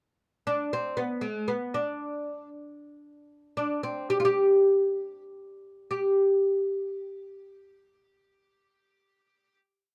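The recording sits in a small, reverberant booth with a short, close ambience, and the oud is placed up front. This brief, complete Persian modal piece in G dastgah homayun has a warm, stately mood, moving in 6/8 at 62-78 BPM counted in dotted quarters with a straight feel. The solo oud enters at 0.5 seconds, its fretless, plectrum-plucked double strings giving a woody, warm acoustic tone as it unfolds an ornamented modal melody. The tempo slows from 2.5 seconds, easing into a final note at 5.9 seconds that the oud holds until it stops at 9.6 seconds.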